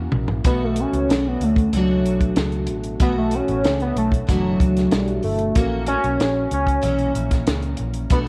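A short fill on a compact, dark-toned cocktail drum kit with a high-tuned snare opens this wistful, lonely fragment of indie and bedroom pop, as a velvety, wave-folded synth lead carries the melody up front with subtle chorus and tape echo over a full-bodied dreadnought acoustic guitar wrapped in ensemble chorus and warbly pitch drift, a round, foam-muted vintage electric bass and a moderate spring reverb, the harmony moving from Bm11 to F#7/A# at 5.6 seconds.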